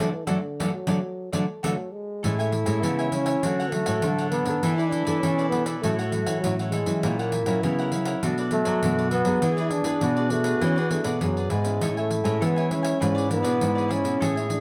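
A straight 4/4 samba and choro groove, driven by a jingly, compressed pandeiro, carries this joyful, lively excerpt, where a breathy trombone with light vibrato sings the melody up front, bathed in plate reverb, over crisp picked cavaquinho, a woody fingerpicked nylon-string guitar in the background and a thumb-plucked nylon-string guitar bass; a band accent fills the opening 2.2 seconds before a soft-attack, roomy clarinet enters at 2.2 seconds with a second line, the whole ensemble sitting in a light overall reverb.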